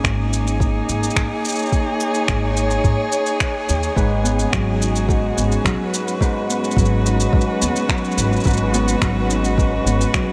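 This wistful, intimate folktronica excerpt opens with a bowed string quartet, one player per line, holding sustained chords up front with expressive vibrato and portamento over an A#m7/G# harmony. Beneath it, a pizzicato upright bass on gut strings gives a woody, dark, thumpy low end, while a soft electronic kick drum and electronic finger snaps and shaker, all re-recorded in a small room, keep a straight 4/4 pulse at 107 BPM in G# minor. At 4.0 seconds the harmony moves to G#m7 and a fingerpicked Celtic harp enters with ringing arpeggios, its tone carried on a tape echo. The whole mix is soaked in a huge ambient reverb that lends it a dreamy atmosphere, with the chamber warmth of the strings set against the produced electronic percussion.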